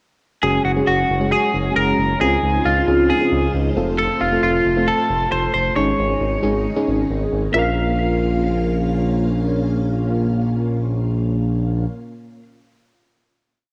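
A melancholic, cool synth-pop piece opens at 0.4 seconds with a bright, twangy twelve-string electric guitar carrying an up-front, motif-based melody in sentence-like phrases, washed in spring reverb, analog delay and cassette tape. Beneath it, a mellow FM electric piano with tremolo and phaser plays syncopated, closely voiced chords, while a lush vintage string machine pad with ensemble chorus sustains the harmony. A smooth, pulsing eighth-note synth bass with portamento glides underneath through the bridge before everything settles onto a final Bbm chord at 7.5 seconds, in a light digital ambience captured on home cassette.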